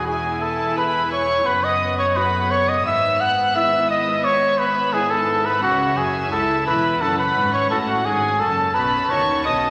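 Festive and lively, this baroque-style concerto movement moves at a steady 86 BPM in a straight 4/4, heard in a short excerpt cut from a longer piece. A clear, punchy trumpet sits up front and carries the solo melody between F#4 and F#5, while a violin section with a smooth, vibrato-rich tone also carries a melodic line in the background and a second, more focused violin section adds a high line reaching F#6. Beneath them, a close viola section fills the middle, and a lute, delicate and fingerpicked on doubled gut strings, adds soft accompaniment from the background. Cellos and double basses, both bowed with vibrato, anchor the low end as far down as E1. All seven parts play together throughout the 9.7 seconds, moving through a progression from E through C#m and F#m to B7/F#, and a generous scoring-stage reverb with a 1.9-second tail gives the ensemble a spacious, ceremonial glow.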